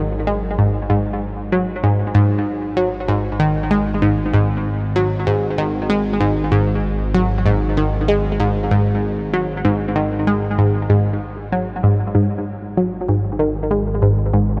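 Cosmic and mysterious, this short cut from a longer piece of ambient, sequencer-driven space music moves in a straight 4/4, tuned slightly below standard pitch. A bright, nasal analog pluck with a detuned sawtooth edge and a noise layer sits up front playing a repeating riff, its fast attack and short decay colored by chorus, phaser and analog delay. Beneath it a sustained, wave-folded analog drone holds a low bass note with slow attack and pulse-width movement, and the whole piece floats in a huge ambient reverb before shifting into a new section at 12.1 seconds.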